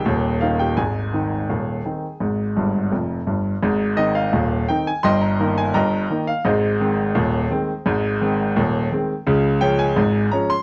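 Ragtime piano in a straight 2/4, this short cut from a longer piece has a jaunty, lively character. A clear grand piano plays alone throughout, sitting present and up front, and covers a broad span from deep bass notes up into the high treble. The harmony moves from an Eb7 into Ab, later passing through Eb/G and back to Ab before arriving on Db near 9.3 seconds. A brief piano fill from 2.6 to 3.6 seconds bridges the opening passage into a longer second section that runs to the close. Light reverb and a dark, warm production surround the clear instrument.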